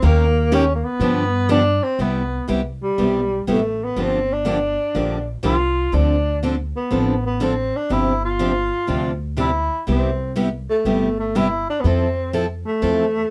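From the first beat, a breathy tenor saxophone sings a mellow, whispered melody with vibrato over bright, picked steel-string acoustic guitar accompaniment with audible finger squeak and a woody, thumpy pizzicato upright bass, all in a swinging, playful acoustic string swing groove at 122 BPM in C major, bathed in light reverb and cut from a longer piece that runs 13.3 seconds here.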